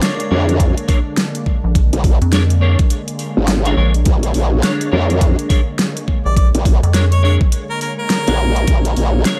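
Dry and dusted with vinyl crackle, this short cut from a longer glitch hop piece struts along at 104 BPM in 4/4 with a 61% swing on the sixteenths, funky and swaggering over a Bb7#9 chord. A knocking, overdriven electronic kick sits up front beside a dubstep kit with a huge snare and hi-hat, while a growling, wobbling formant-filtered bass with tube saturation and chorus joins at 0.3 s, and a rubbery, hollow square-wave bass with a resonant filter pluck bounces between 1.6 and 7.4 s. Above them, a smooth, detuned sawtooth pad holds pumping chords, a bright, twangy clean electric guitar stabs through chorus and digital delay, and a clear, punchy harmonica takes a short solo from 6.3 s.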